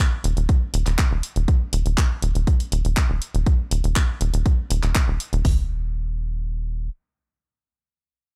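A straight 4/4 pulse at 121 BPM drives this brief cut from a longer melodic techno piece. It opens on a drop that runs to 5.5 seconds: two layered electronic house drum kits play handclaps and hi-hat alongside a punchy, up-front kick with toms, both tape-tinged and re-recorded in a large room. From 0.2 seconds a tight, nasal sequencer bass sits around a low Eb1, its sawtooth and square-wave filter plucks pumping against the sidechain until 6.9 seconds, giving a driving, hypnotic feel in a dry, gritty hardware sound.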